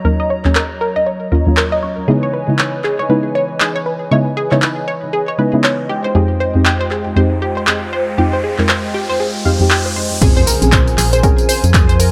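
A swung 4/4 groove at 118 BPM drives this deep house fragment in Bb minor, with a 59% swing on the sixteenths, and a punchy, up-front analog drum machine enters at 0.4 seconds with crash cymbal, handclaps, hi-hat and tambourine. From the outset a hollow, flute-like pad holds sustained chords while a soft, nasal chord stab with a detuned sawtooth edge sits forward in the mix. Both breathe with sidechain pumping and chorus, and the stab also carries digital delay. Alongside them a bright, round analog pluck spins arpeggios through phaser and delay under a filter sweep, moving over Ebm9, Dbm9 and Fm9. An electronic riser builds from 7.2 seconds until the drop at 10.2 seconds, where an impact lands, a dark, organ-like FM bass with tube saturation enters on Bbm9, and an analog electronic kick adds its thump. The mood is deep and warm in light reverb, and the clip is cut from a longer piece.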